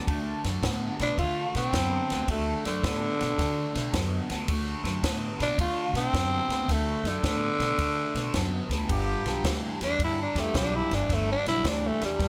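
A phasered, overdriven semi-hollow guitar opens this laid-back, soulful electric blues shuffle with a low riff, joined almost at once by woody, growly pizzicato upright bass and a dry, compact cocktail kit with a tight kick, a high-tuned snare and dark ride cymbal sitting up front. The groove swings at 109 BPM in 4/4, resting on a D chord. At 1.0 seconds a raspy, breathy tenor saxophone takes the solo, its soft attack and gritty growl placed up front and bathed in plate reverb. At 8.9 seconds the harmony moves to G7 as a tight, present horn section adds jazz-style stabs. Light reverb gives the whole band a natural sense of space, and the recording is a short section cut from a longer piece.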